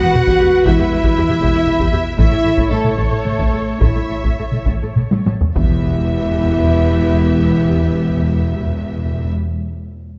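In a steady 6/8 that slows between 1.4 and 5.6 seconds, this epic, heroic cinematic orchestral cue sets a lush violin melody in the background over a distant second violin line, focused viola accompaniment, dark French horn and roomy trombone chords, and a bowed cello and double bass foundation. Up-front, dry taiko drums drive the music with a fill at 5.1 seconds, and calf-headed timpani enter at 5.6 seconds as the harmony returns to E minor, all washed in a wet scoring-stage reverb.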